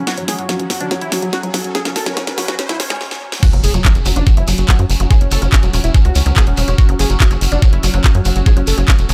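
Dry, high-passed and loud, this intense psychedelic trance cut at 143 BPM opens with a build-up over an F#5 chord, where an ethereal, airy pad, a resonant drone with moving overtones and a lush, detuned unison pluck riff sit in the background under a thick, bold unison lead steeped in phaser and tape echo, while a drum kit's cracking snare, handclaps, hi-hats and crash fills push forward alongside a filter sweep on a synth arpeggio and a very quiet riser. At 3.4 seconds the drop hits with an electronic impact, a knocking, up-front kick, a grainy, distant shekere, and a tight, punchy sawtooth sequencer bass that drives beneath the sidechain-pumped synths.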